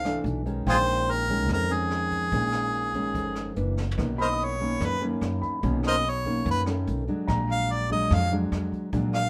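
A clear, up-front harmonica with light vibrato and tongue slaps carries the melody through this sunny, breezy bossa nova at 145 BPM, taking a jazz-style solo from 4.0 seconds as the music settles into B major after a brush drum fill at 3.8 seconds, over thumb-plucked nylon-string guitar, a woody pizzicato upright bass, a warm grand piano in the background, and a distant, roomy brush kit with a boomy kick, all in light reverb.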